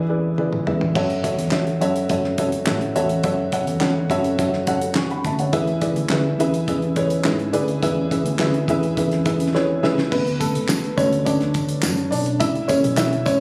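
Piano-driven pop at 105 BPM with a hopeful mood, built on a dark, worn upright piano with audible action noise and a slightly detuned, boxy tone up front, a round, foam-muted vintage picked electric bass, and a damped 70s drum kit with a fat snare and dark cymbals that enters with a fill at 0.4 s, before the piano takes a solo at 10.1 s over D and A#m7b5 chords and a jingly tambourine joins in the background at 10.4 s, all heard through a phone recording in the room with club reverb.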